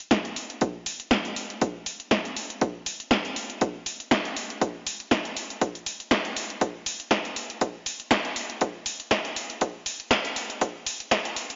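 A punchy, layered electronic kick drum sits up front with a tape-warm body and a high-pass filter trimming its low end, entering at 0.1 s and stopping at 11.2 s. Beside it, a house drum kit supplies a punchy snare and warm hi-hats, both high-pass filtered and also pushed forward in the mix. This nu-disco fragment, cut from a longer piece, moves in a steady four with a light swing on the sixteenths, giving the groove a subtle lilt. The whole passage works as a build-up, carrying a cosmic, sleek mood. A lush hall reverb soaks the mix in a dreamy haze, and the highest frequencies are rolled off for a soft, dusky finish.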